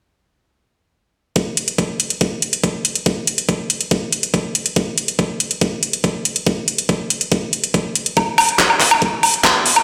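A straight 4/4 trance groove at 141 BPM drives hypnotically from 1.4 seconds, with an up-front, knocking electronic kick thinned by a high-pass filter and a layered garage drum kit of handclaps, metallic hi-hats and woodblock, both tape-warm and produced, all washed in a large, wet plate reverb that suggests a big sound system in a bare room, the kick dropping out at 9.5 seconds just before the kit ends this short cut from a longer piece at 9.8 seconds.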